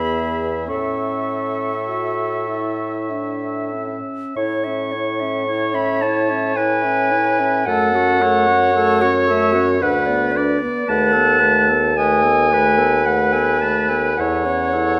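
A slow, lyrical romantic movement for wind quintet opens with all five instruments sounding together, moving freely in a rubato triple metre. The concert flute carries the melody with an airy, straight tone, a crisp attack and an expressive, close-miked presence, while a smooth-topped oboe with light vibrato shapes a second line. A bright, vintage-sounding clarinet sits up front in the accompaniment alongside a mellow French horn, and a warm bassoon anchors the bass, also placed forward. Around 7.7 s the harmony turns to F-sharp minor, and by 14.2 s it arrives on A over E, giving the phrase a warm, lyrical shape. A moderate recital hall reverb surrounds the group in this passage cut from a longer piece.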